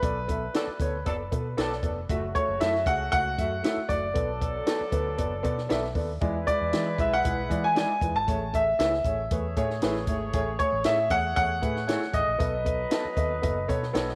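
Uptempo 1960s-style soul with a passionate, driving mood, in a straight four-beat feel, cut from a longer piece. A clear grand piano carries the melody up front, its open, long-sustaining tone trailed by tape echo, while a dark upright piano supplies mellow, woody accompaniment and adds a short fill at 13.7 seconds. Underneath, a vintage electric bass played with the fingers sounds round and foam-muted, and a compact cocktail drum kit keeps time on hi-hat, tight kick and high-tuned snare with a dry, natural character. From 0.5 seconds a dark horn section adds a tight second line with light vibrato in a vintage jazz style, and an electric guitar through a small old amp drops twangy, slightly broken-up stabs in the background. The harmony moves from Bm7 through F#m7 and back to Bm7, then on through E7 and Amaj7 to B7, and the whole band sits in a small room with moderate echo chamber reverb.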